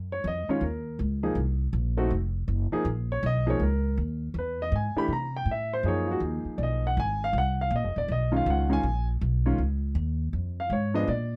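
A woody, dark pizzicato upright bass with steel strings opens this late-night, smoky jazz excerpt, joined at 0.1 seconds by a warm, natural baby grand piano carrying the melody, both up front and closely, dryly recorded at a swinging 161 BPM in 4/4 over restless harmony that moves from Gb6 through chords such as Bbm, E, B6 and Cm7b5 before settling on Fm.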